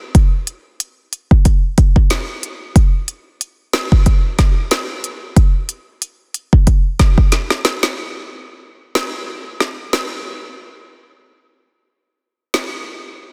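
This short cut from a longer dancehall piece opens on an electronic, produced afro-pop drum kit alone, its deep kick, woody snare and crisp hi-hat sitting up front with a sultry, hypnotic swung sixteenth-note feel. A drum fill at 7.3 seconds leads into a second section at 8.0 seconds, and the kit plays on until 12.7 seconds. Light reverb surrounds the drums, and the master is dense and heavily limited in a modern style.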